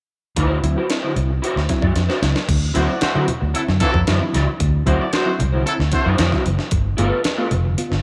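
At 0.4 s this energetic funk excerpt opens with a compressed, gritty breakbeat kit up front, its thumpy kick and high-tuned snare carrying a sampler-style, pitched-up character from a small room, alongside a dark, round, foam-muted bass that sits just as close. A slightly broken-up electric guitar with ensemble chorus plays accompaniment, while a reedy electric piano with fast tremolo adds clean stabs from the background through its built-in speakers. A drum fill leads into a new section at 2.5 s, where very quiet, bright congas with a low-tuned thin skin join in. At 2.8 s a tight, vintage horn section in pop style adds a clear second line that drops out before the close. The harmony moves from a D9 to a G9 chord, and a moderate plate reverb gives the funky groove some space.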